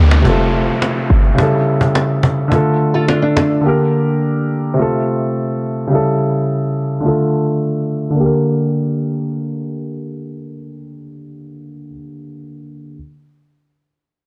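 The recording sounds dry and gritty, with transformer saturation and cassette-tape character in a small room ambience. It's a tough, hypnotic dancehall cut, taken from a longer piece, moving at 106 BPM in straight 4/4 and G minor. A dark, mellow grand piano with long sustain sits up front through a low-pass filter, carrying the accompaniment over F, A7, Dm and Gm. It's joined briefly at the start by a punchy, tight 808-style bass with a sine body, a noise layer, a fast attack and a decaying tail. A woody, vintage cajon with faint snares adds band-limited acoustic percussion until 3.5 seconds, while an electronic downlifter sinks underneath and a filter sweep runs across the opening 8.2 seconds. Around 2.9 seconds, a small, fingerpicked nylon-string guitar slips in with warm arpeggios softened by a low-pass filter and tape echo, before the piano carries on alone into a new section.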